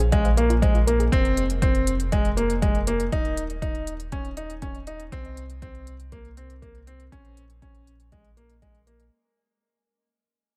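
An intimate, melancholic mood hangs over this short cut from a longer piano and strings electronica track, set in a straight 4/4 groove. A bright, worn baby grand piano sits up front with a riff in its low-middle register, its short sustain and audible action noise giving it a close, personal quality, with delay trailing behind it. Beneath it, a deep, round sine sub bass holds the low end with sidechain pumping and a filter sweep running through the whole passage, while a punchy electronic kick and smooth electronic hi-hats keep time. A soft, nasal, detuned pluck plays arpeggios in the background, colored by chorus, delay and sidechain pumping, but only for the first 1.1 seconds. The harmony moves through Fm, Dbsus2/Eb, Bbsus2/C and Bbm, and the dry mix fades out across its full length of about 9.1 seconds.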